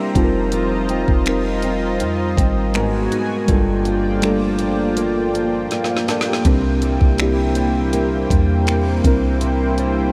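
A knocking kick, woody snare, finger snaps and tape-warm hats from an up-front, electronic R&B drum kit set the pace of this late-night, longing contemporary R&B excerpt at 81 BPM in a straight 4/4, entering at 0.2 seconds alongside a deep, round, sine-like 808-style bass. Muted, intimate synth keys with a felt-like, chorused tone play the accompaniment from the start, while a shimmering, retro pulse-width pad holds sustained chords that pump against the sidechain. In the background, a dark, fingerpicked flamenco guitar spins arpeggios colored by ensemble chorus and tape echo. The harmony moves from F7sus4 through Abm7 and Gm7 to C7, with a drum fill between 5.7 and 6.5 seconds leading into the final chord. A huge ambient reverb soaks the dreamy mix, lending it a hazy, after-hours glow.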